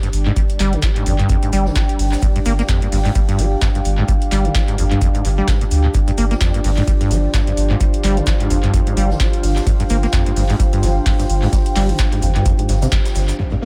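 A swung 129 BPM acid house groove in 4/4 is driven by an overdriven electronic kick, a booming analog drum machine with metallic, low-passed hats, handclaps and shaker, and a very quiet, natural acoustic jazz kit with a high-tuned snare underneath. A squelchy, resonant sawtooth acid bass riff with tube saturation, lush chorus and analog delay rides over a thick, up-front triangle sub bass, while a dark, detuned analog pad with 12-bit sampler grit holds sustained chords and a warbling, nostalgic tape-like pad adds a sustained texture, all pumping against the kick. Cut from a longer piece, this trippy, gritty passage sits in an echo-heavy small room, with a band accent at 12.9 seconds and an electronic impact hitting at 13.4 seconds.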